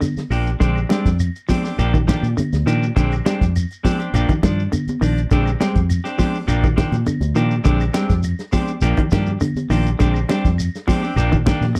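A dry, close 1970s-style studio recording captures a driving, funky afrobeat excerpt at 102 BPM in Bb mixolydian, where a dark, tight soul drum kit, a grainy shekere and an up-front, foam-muted fingered bass anchor a hollow-body semi-hollow guitar's clean arpeggios and a picked electric guitar's stabs with slapback echo over an alternating Ebmaj9/Bb and Bb13 vamp, while ringing, high-tuned congas and woody, distant claves sit in the background.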